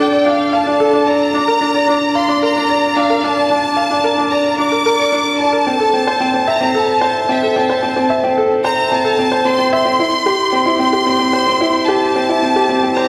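Intimate yet cinematic, this electronica excerpt moves at 111 BPM in a straight 4/4, tuned slightly below standard pitch to A4 = 435 Hz. An upright piano plays a riff from start to finish, its tone worn, woody and slightly detuned, placed up front and sitting a little louder than the strings. Above it, a symphonic violin section carries the melody in a high register, its bowed ensemble sound lush, biting and focused, with audible vibrato. The harmony moves through D minor, B-flat, A minor and C, with the A minor arriving at 5.7 seconds and the C at 10.0 seconds. A wet scoring-stage reverb with a 1.5-second decay wraps the piece in a spacious ambience, lending the strings a distant, filmic sheen.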